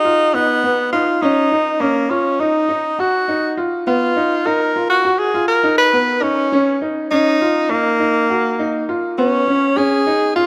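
Moving in a straight 9/8 at 204 eighth-note beats per minute, this intricate, brooding progressive instrumental fragment, cut from a longer piece and tuned to A4 = 439 Hz, sets a warm, smooth-topped jazz tenor saxophone solo with light vibrato, scooped notes and slapback echo up front over brilliant, open baby grand piano arpeggios, all bathed in a moderate plate reverb as chords such as D#m and Bmaj7#11 pass before the music turns to a new section on C#7(no3) at 9.2 seconds.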